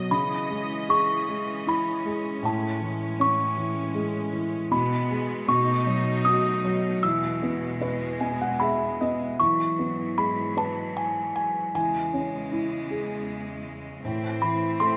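A gentle, tender children's lullaby in E major at 78 BPM in a rubato 3/4, where a delicate, tinkling music box carries the melody up front over soft, felt-muted upright piano accompaniment with audible action noise and a boxy, intimate character, while a clear studio string section holds bowed chords with light vibrato and an earthy bite, the piano adding a fill from 7.8 to 9.4 seconds, all within a recital hall reverb in this excerpt cut from a longer piece.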